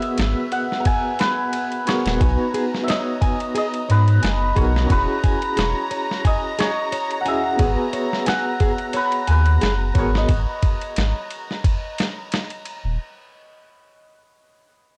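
A dry, gritty small-room recording with cassette-tape and transformer colour frames this smoky, melancholic trip hop fragment in G# minor, moving at 89 BPM in 4/4 with a light sixteenth-note swing. A dusty, compressed sampler-style drum kit sits up front with a thumpy kick, medium-tuned snare and ride cymbal, while a deep, round dub sub bass with tube saturation joins at 0.2 seconds and anchors the low end. A bright, shimmering santur carries the hammered melody through a dub echo, over a clean tine electric piano playing accompaniment through a combo amp, coloured by tremolo, 12-bit sampler grit and tape echo until it drops out at 10.3 seconds. A lush, bowed studio string section holds smooth, vibrato-laden sustained chords beneath, and from 2.2 seconds a fingerpicked flamenco guitar with fresh strings adds warm arpeggios in the background, also sent into dub echo. The harmony drifts from G#m9 through Bmaj7 and E69 before returning to G#m9, giving this cut from a longer piece a wistful, hazy sway.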